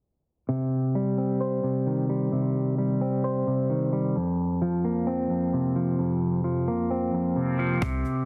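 A dense, heavily limited master with light small-room reverb and a low-pass filter gives this dark, menacing half-time trap excerpt a muffled, enclosed sound. A clean, fingered electric guitar sits up front, compressed and shadowy, outlining C minor and Fsus4 chords under a filter sweep from 0.5 to 7.8 seconds. At 7.8 seconds a boomy sine-based 808-style bass with a noise layer and a snappy, dry cajon enter for a brief hit.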